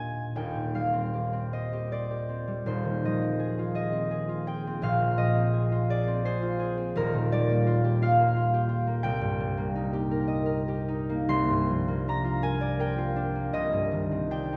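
Classical solo harp in E-flat major, serene and dreamy, drifts at a slow, rubato 6/8 pulse of 42-60 BPM as a single fingerpicked concert harp, warm, ringing and up front, spans Eb1 to C6 through lush chords such as Fm9/Eb, Bb9sus4, Ebmaj9 and Gm7/C before settling on Cmadd9 at 13.5 seconds, all bathed in a wet concert-hall reverb in this short fragment of a longer piece.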